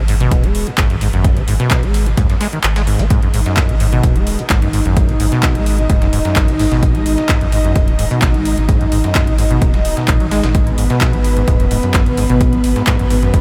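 Trippy and driving, this acid house excerpt runs at 129 BPM in G# minor over a single G#m7 chord, led by a squelchy, resonant sawtooth acid bass riff with tube saturation, subtle chorus and diffuse ambient delay, sitting up front over a round sine sub bass that pumps with the sidechain. A punchy, tape-warm electronic kick anchors the beat, dropping out briefly at 2.6 seconds, while an analog drum machine adds dry handclaps and metallic hi-hats and a gritty, overdriven sampler-style kit contributes very quiet hi-hat and snare. From 3.4 seconds a lush vintage string machine ensemble enters with slow-attack sustained chords, swirling with phaser and ensemble chorus and pumping with the sidechain, all set in light reverb.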